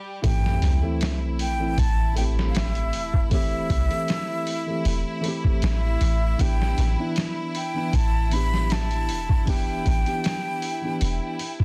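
Trip hop with a dark, brooding mood, this short excerpt from a longer piece moves at an unhurried, lightly swung pace over two minor-seventh chords. A clear, biting violin section holds sustained chords from the opening moment, while a breathy jazz flute with tape echo carries the melody in its upper range with expressive vibrato. A felt-muted upright piano adds mellow, intimate accompaniment treated with tremolo and tape echo, and a soft, round 808-style bass sits deep and up front. The boom bap drum kit sounds sampler-style and pitched down, gritty and compressed, with a thumpy kick, medium-tuned snare and hi-hat, re-recorded in a small room. An electronic sub drop rumbles in the background from 0.2 to 3.3 seconds, and the dense, heavily limited master carries a layer of vinyl crackle.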